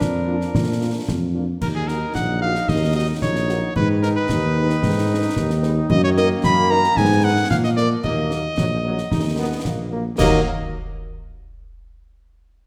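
Martial and resolute, this is a brief cut from a military-style march for wind band in Eb minor, moving at 112 BPM in a straight 2/4. A clear cornet carries the melody up front with a smooth, classical tone, while a dark tuba sits just as prominently beneath it, anchoring the bass with light vibrato. A bright trombone section holds sustained chords, and a mellow French horn section joins at 0.3 seconds to fill in accompaniment from the background. A very quiet, close-miked euphonium adds a soft-attacked second line only through the opening 1.3 seconds. Concert snare, bass drum and clash cymbals keep the march pulse with a close, dry sound and dark cymbals, as the harmony moves from Bb into Ebm, Abm and back, all set in a generous scoring-stage reverb.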